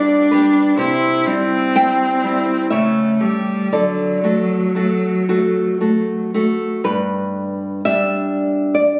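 Romantic duo for cello and classical guitar in G major, tender and lyrical at a rubato 56-68 BPM in 3/4, in which a clear, focused bowed cello with vibrato sings the up-front melody until 6.3 s over a small, fingerpicked nylon-string guitar with audible finger squeak that carries the accompaniment through G, C, A7/C# and D, returning to G at 6.8 s and continuing alone until 9.0 s, all heard through a moderate scoring-stage reverb on a phone recording in a club-like room, in an excerpt from a longer piece.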